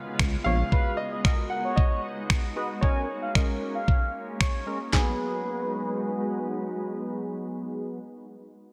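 A bright, 1980s-style digital production set in a lush hall reverb gives this short dance-pop fragment a polished, energetic yet bittersweet character, moving at 114 BPM in a straight 4/4 in G# dorian, tuned to A4 = 437 Hz. A shimmering, ethereal ambient pad holds sustained chords with chorus, its own reverb and sidechain pumping, while a barely audible electronic downlifter slips past at the very start and a glossy, dark chorused synth bass appears only briefly near the opening. The dusty sampler-style kit sits up front with gritty finger snaps, handclaps, a thumpy kick and a medium-tuned snare, carrying the groove until 5.1 seconds. A clear, intimate concert grand piano with audible action noise and an expressive, smooth sawtooth lead with phaser, vibrato and digital delay both carry the melody, as a punchy, funky polysynth comp with detuned sawtooth tone fills in the accompaniment. A filter sweep runs through the opening section, and the chords move from C#7 to G#m7 and A#m7 before settling back on G#m7 as the second section begins at 4.9 seconds.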